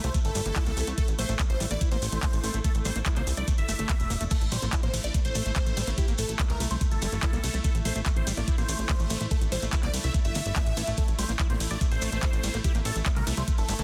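Psychedelic trance at 144 BPM in A phrygian, this hypnotic, driving excerpt from a longer piece runs on a steady, straight 4/4 pulse. A knocking electronic kick sits up front from 0.1 to 13.6 seconds, joined by a garage drum kit with metallic hats, handclaps, crash and ride cymbals, while grainy maracas sound distant in a large room behind them. Down low, a punchy, funky analog bass with a plucky filter and tube saturation holds the bottom, and a squelchy, gritty acid bass riff with distortion and dub echo churns in the background. On top, a huge, detuned supersaw melody carries vibrato through phaser and delay, pumping against the kick along with a pulsing, tempo-synced gated texture holding sustained chords on A3 with chorus and a bright sheen. A cloudy, evolving granular pad drifts behind it all, and the dense, heavily limited master wraps the mix in digital ambience.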